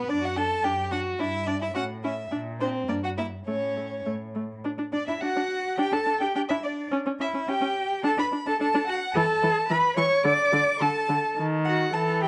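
Two bowed violins open this lively, graceful classical-period string quartet movement in D major at 106 BPM in 2/4, the first singing the melody with a rich, expressive vibrato and gliding portamento while the second carries a smooth, even line up front, joined by a warm viola accompaniment with its own slides and a soft-attacked cello bass entering at 0.1 seconds, all set in light reverb and a dark production as the music moves into a new section at 4.6 seconds.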